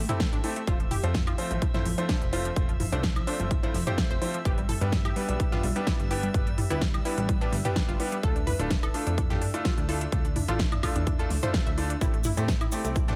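A straight 4/4 pulse at 127 BPM drives this dreamy progressive house passage in D dorian, built on a punchy, up-front electronic kick and a big-room kit with a huge snare, crisp hats and woodblock, while electronic toms and congas sit in the background with studio reverb. A funky, wave-folded analog bass and a lush, detuned unison pluck playing arpeggios both pump against the kick, the pluck and bright grand piano stabs each trailing digital delay, as the chords move from Am7 through F and G to Dmadd9 and back. Above it all, a calm, glassy texture of drifting overtones hangs in chorus and reverb, and a grainy tube shaker joins at 12.0 seconds near the end of this excerpt cut from a longer piece.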